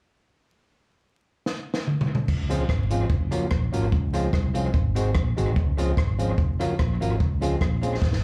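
A lightly swung 146 BPM ska groove in Db major opens with a compact cocktail drum kit, its high-tuned snare, tight kick and dark cymbals dry and up front with dub echo, breaking into a fill from 1.5 to 2.3 seconds before a round, fingered electric bass enters at 2.3 seconds, followed at 2.5 seconds by clean picked hollow-body jazz guitar with slapback echo, lightly overdriven organ stabs with key click and chorus vibrato, and a jingly tambourine in the background, all moving through Dbmaj7, Gbmaj7 and Ab7 chords in a joyful, upbeat mood heard as a live gig through the venue's PA with club reverb and vinyl crackle.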